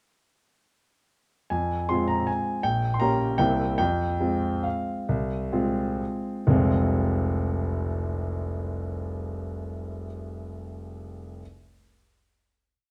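A warm, vintage-toned grand piano carries this brief classical waltz alone, playing from 1.5 s to 11.4 s in F minor across a range from F1 to C6. The mood is wistful and elegant, set in 3/4 with a rubato feel and a tempo that moves between 121 and 170 BPM, slowing down from 3.2 s to 6.5 s. A smooth single-line melody sits up front over a waltz bass, moving through Fm, Gdim/Bb and C7 before returning to Fm. After the opening section, a final chord rings from 6.5 s to 9.3 s to close the whole piece. Close, detailed microphones and light reverb give the instrument an intimate, present sound.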